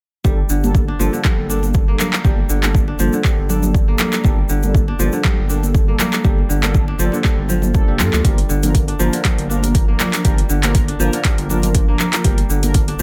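Heard in a digital ambience, this spiritual, earthy afro house excerpt sets a ringing, fingerpicked kora playing arpeggios and dark, detuned synth brass stabs, both with dub echo and sidechain pumping, over a round, wave-folded analog bass that also pumps, while an overdriven deep kick sits up front, bright congas sit in the background, a grainy egg shaker adds texture, and an overdriven afro-pop kit of handclaps and metallic hi-hat joins at 1.2 seconds.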